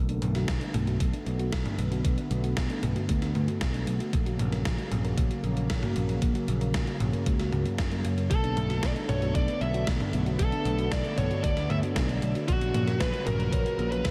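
Nocturnal and nostalgic, this synthwave excerpt moves at 115 BPM in B minor, with a smooth, detuned sawtooth pad pumping in the background under a growly, punchy picked electric bass, while a round, tine-like FM pluck spins chorused, tape-echoed arpeggios through a filter sweep over alternating Bm7 and F#/A# chords. A thumpy electronic kick enters at 0.5 seconds beside a tape-toned 80s drum machine whose hi-hat, toms and snare ring with gated reverb. At 8.3 seconds a bluesy, distorted lead guitar steps up front with delay, and the whole dreamy mix is soaked in a huge ambient reverb.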